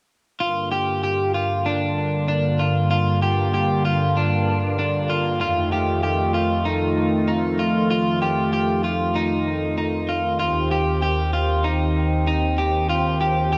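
Dream pop with an ethereal, hazy mood, built from a swirling, detuned phased analog pad holding sustained chords beneath slightly broken-up electric guitar arpeggios that carry subtle chorus, dub echo and shimmer reverb, both parts up front and playing from 0.4 to 13.6 seconds through Gm7, F7 and Eb6 in an echo-heavy mix bathed in wet spring reverb, cut from a longer piece.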